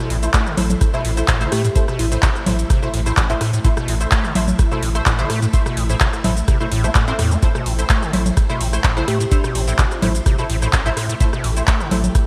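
A bright 1980s-style digital sheen and a lush hall reverb frame this hypnotic, trippy acid house excerpt at 127 BPM in A minor, where an up-front, tape-warm kick and an analog drum machine of congas, handclaps, metallic hats, rim click and shaker with gated reverb drive a squelchy, resonant square-wave acid bass riff with overdrive and delay, a round sine sub bass, muted sawtooth dub chord stabs, and background string-machine chords pumping under the sidechain, while a sparkling, bell-like FM electric piano melody appears at 1.5 and 9.1 seconds.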